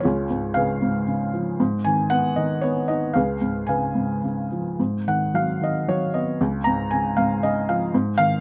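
Heard up close and nearly dry, a felt-muted upright piano sits intimately at the front, its tone soft and mellow. This lyrical classical solo moves in a flexible, rubato triple metre, drifting between C#7 and G#m harmonies before settling on C# at 6.4 seconds. The mood is bittersweet and moody in this short passage of just over eight seconds, cut from a longer piece.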